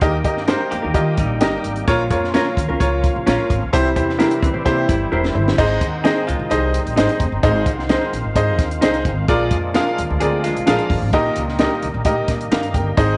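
A slightly detuned, woody upright piano opens this joyful, uplifting 1960s-style soul excerpt, alongside a pizzicato upright bass with transformer saturation, a compact cocktail drum kit with a punchy kick and high-tuned snare, and a gritty, overdriven tonewheel organ holding sustained chords through chorus vibrato in the background. A dark, fingered electric guitar adds chorused stabs from 0.5 seconds, while a hollow-body jazz guitar plays a picked riff from 0.7 to 7.2 seconds before returning briefly. A drum fill at 5.1 seconds leads into the second section, all set in a light studio reverb.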